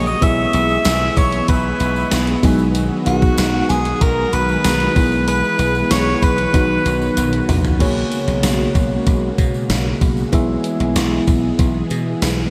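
A gated 80s digital drum machine drives this excerpt of uplifting, glossy 1980s-style pop at 95 BPM in a straight 4/4, its thumpy kick and gated-reverb snare up front, with a dry, punchy thumbed slap bass and a jingly tambourine tucked in the background. Over chords moving from E/B through G#m7/B to B, a bright alto saxophone carries the melody with light vibrato and scooped notes, joined by a crystalline synth bell second line, until both stop at 7.5 s as a drum fill leads into a new section at 7.8 s on F#add9/B. Beneath them, a glassy FM electric piano and a vintage sawtooth string machine of violas hold the harmony, the whole mix soaked in huge, dreamy ambient reverb.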